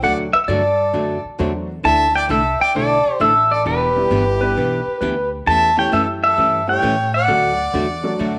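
Swung eighth notes in 4/4 give this short country fragment a playful, swinging lilt. A bright, twangy pedal steel guitar carries the melody up front, with fingerpicked slide lines, volume swells and a slapback echo, while a smooth, lightly vibrato fiddle adds a second line. A dark, hollow-body archtop guitar and an intimate upright piano with audible action noise accompany, over woody pizzicato upright bass, and a clean lap steel slips in briefly between 4.4 and 5.3 seconds, all set in a moderate echo chamber reverb.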